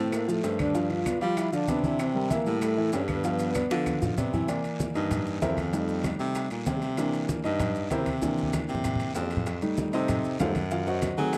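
Afro-Cuban jazz excerpt, lively and sophisticated, where a breathy, dark trombone with tape echo states the melody until 4.1 seconds over an up-front baby grand piano and a clear, vibrato-tinged baritone saxophone carrying the bass, with woody claves clicking along until 4 seconds, before the piano takes a solo from 4.5 seconds over low-tuned congas, tight bongos, ringing timbales in the background, raspy guiro and grainy maracas in a dry, close 1970s-style studio sound.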